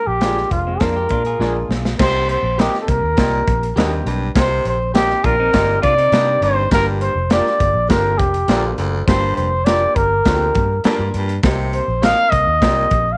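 Light reverb frames this urgent, driving slice of uptempo 1960s-style soul at 102 BPM in C minor, cut from a longer piece, where a breathy, whispered trumpet carries the melody up front with vibrato and scooped notes over a saturated, gritty small-room breakbeat kit with dark cymbals and a tight kick. Underneath, a round, foam-muted fingered bass punches along while a baby grand piano with audible action noise sits in the background beside twangy stabs from a slightly broken-up guitar through a small old amp, and a clean semi-hollow guitar plays a riff with subtle chorus from 0.7 to 6.7 seconds. After a drum fill leads out of the opening Bb7 at 2.0 seconds, a raspy baritone saxophone joins with its own riff as the chords move from Cm7 through Gm7 and back.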